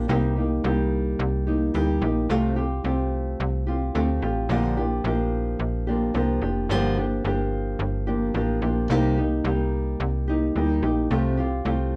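A small, thumb-plucked nylon-string guitar sits up front in this reflective, wistful acoustic pop excerpt, its acoustic tone carrying audible finger squeak as it plays the accompaniment through the full 12 seconds. Beside it, also up front, a slap-like FM bass adds a snappy, metallic attack with a digital edge, each note striking fast and then decaying. The harmony circles through Cm7, Fadd9/C, Bb6 and Gm7 before returning to Cm7 and Fadd9/C, over a 4/4 pulse with a gentle swing on the sixteenths. A moderate studio reverb gives the pair some space, while the sound of worn, warbling old cassette tape brings a warbly pitch drift that deepens the wistful mood. It plays as a single section lifted from a longer piece.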